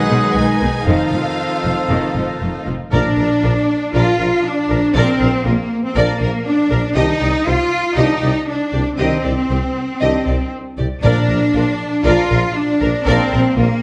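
A clear, up-front cello section carries the bass in this triumphant, heroic cinematic excerpt in Bb major at 118 BPM, joined by a woody double bass section and, from 2.9 s, a distant, roomy tuba. Two lush violin sections sit in the background, one leading the melody and one playing a second line, over a smooth viola accompaniment, while a mellow French horn section and a trombone section hold sustained chords and a solo trumpet adds stabs until 2.6 s. Soft-mallet timpani with round calf heads strike twice, and the whole ensemble rings in a reverberant recital hall.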